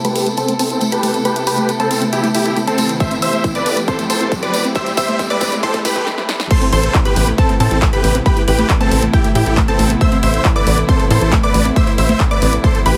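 A heavily compressed, radio-like sound with a high-pass filter and light reverb frames this bittersweet, soaring uplifting trance excerpt in A minor at 137 BPM, built on an Amadd9 chord. A huge, euphoric supersaw lead carries the melody over dark, veiled con sordino strings, with lush unison plucks in the background playing a high second line and filter-swept arpeggios, all pumping with sidechain. A dry analog drum machine supplies crash, handclaps, hi-hat and snare, and a distant, jingly tambourine and a very quiet riser join the build-up under filter sweeps and drum fills. A punchy, layered kick enters at 3.0 seconds, and just after the drop at 6.5 seconds, at 6.7 seconds, a tight, driving sawtooth sequencer bass arrives up front.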